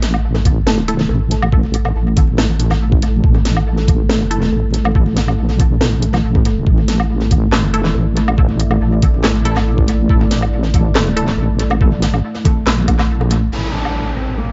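An echo-heavy, dusky mix with vinyl crackle and a dulled top end frames this brooding, meditative stretch of half-time deep dubstep with a light swing. A deep, detuned wobble bass sits up front over a gritty, thumpy electronic kick, a tape-warmed garage kit of handclaps, hi-hat, cracking snare and woodblock, and background bongos and congas. A muted dub chord stab with phaser and dub echo joins them, and from 1.2 seconds a warbling, vintage ambient pad with chorus hangs beneath; at 13.5 seconds, once the kick has fallen away, a mellow duduk with vibrato and scooped notes enters alongside an electronic downlifter.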